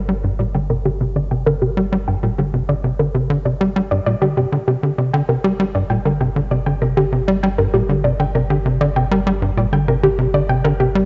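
Heard through a cassette-tape haze that rounds off the top end, this brief ambient fragment cut from a longer piece sits in a moderate plate reverb with a 2.8-second tail. At 98 BPM in a straight 4/4, it holds on a single G minor chord, and the mood is cosmic and expansive. A tight, punchy sequencer bass built from sawtooth and square waves drives a riff up front between G2 and G3, its fast-attack filter pluck decaying and echoing through an analog delay. Above it, a lush, detuned unison pluck with a noise layer spins arpeggios from G4 to G5, also fed through analog delay and sitting lower in the mix. Underneath, a deep, round sine sub bass sustains a single G1. Filter sweeps run across both the sequencer bass and the arpeggio sound for the full 11.1 seconds, giving the static harmony a sense of constant motion.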